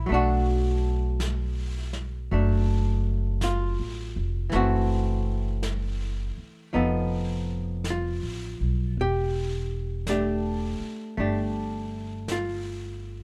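A slow, swung 4/4 at 54 BPM sets a tender, romantic jazz ballad, cut from a longer piece, with an upright bass plucked up front in a woody, growly voice and a clean, dark hollow-body archtop guitar comping close beside it. A softly mixed, airy brush kit joins at 0.1 s with brushed snare and hi-hat. The dry, warm production carries the harmony through Bm7, F#m7b5, F7#11 and Em7.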